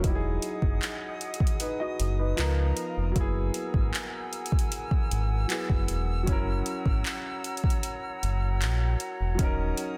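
Contemporary R&B at 77 BPM in 4/4 with a moody, longing feel, this short cut from a longer piece sets a warm grand piano's accompaniment against sustained chords from a pure, expressive flute section with vibrato and lifted highs, moving from Emaj9 through C#13 and F#9sus4 to D#m7. Underneath, a deep, sine-like sub bass with an octave sits up front with a fast attack and mellow sustain until 9.7 seconds, while a smooth, electronic drum kit of soft kick, metallic hi-hats and handclaps, re-recorded in a large room, also sits close. The mix is dry, dense and heavily limited in a modern way.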